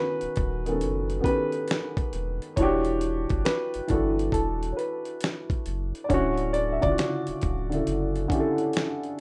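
Lo-fi hip hop with a nostalgic, dreamy mood and a swung feel, where a dark, woody upright piano carries the melody over a soft, felt-muted upright piano with audible action noise and cassette-tape colour, both bathed in plate reverb, while a round, deep sine sub bass and a gritty, 12-bit sampler-style kit of finger snaps, hi-hat, thumpy kick and fat snare sit in a rough home-demo mix as the chords move from B7/D# through Em9 to Dmaj9, the melody piano falling away at 8.1 seconds.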